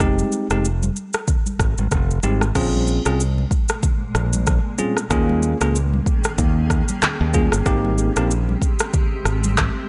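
Dry and close-sounding with softened highs, this sunny, romantic afrobeats excerpt from a longer piece swings lightly over Fm7, Bbm7, Eb7sus4 and Abmaj7, with a bell-like, clean tine electric piano and a punchy, direct fingered electric bass up front, an electronic, produced afro-pop drum kit with a deep kick, handclaps, rim click, shaker and crash cymbal, very quiet high-tuned congas played with hard hands, and a blurred, evolving granular cloud pad, slow to attack and carrying its own reverb, drifting in at 3.5 seconds.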